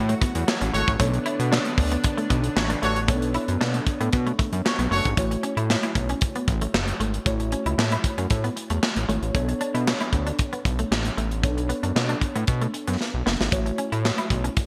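A bright, 1980s-style digital production with light reverb frames this slick, danceable early-eighties boogie funk excerpt at 115 BPM in 4/4, moving between A6 and Bm9 chords. A tight funk kit with handclaps, hi-hat, a tight kick and a medium-tuned snare in gated reverb sits up front beside a fat, detuned sawtooth analog bass with a saturated filter pluck, while a mellow tine electric piano with analog chorus and a clean, compressed semi-hollow guitar riff fill out the arrangement. A lush, airy unison pad glows in the background and a smooth-topped horn section with light vibrato adds a second line until 5.1 seconds, and a drum fill at 13.0 seconds leads back to A6.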